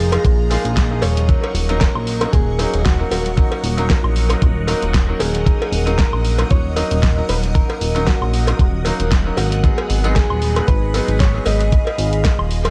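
Cosmic and sensual, this nu-disco fragment in Eb minor moves at 115 BPM with a lightly swung 16th feel, its harmony shifting from Bb7sus4 to Ebm7 and then to Abm7 at 9.6 s. An up-front, gritty, thumpy electronic kick and a glossy, mellow chorused synth bass anchor the groove. A fat-snared pop drum kit with warm hats and woodblock joins a band-limited cowbell sitting in the background, both carrying tape echo. Above them, a picked, clean, direct-recorded electric guitar carries the melody, a brilliant, worn grand piano with sidechain pumping accompanies until 11.7 s, and a lush string machine with phaser and ensemble chorus sustains chords in the background of an echo-heavy, lightly reverberant mix.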